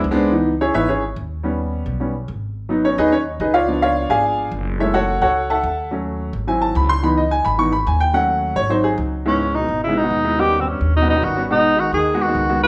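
A driving, straight 4/4 groove at 215 BPM in C# minor carries this sultry jazz excerpt, with a thumpy upright bass on gut strings played pizzicato underneath a clear, polished upright piano that takes a solo from 0.3 seconds over chords such as C#m9, C#7b9 and D#m7b5. At 9.3 seconds a whispered, up-front tenor saxophone enters with subtone, vibrato and scooped notes on the melody, while a breathy, close-miked trombone with light vibrato sits in the background on a second line. The band plays live in one large, wet-sounding studio room.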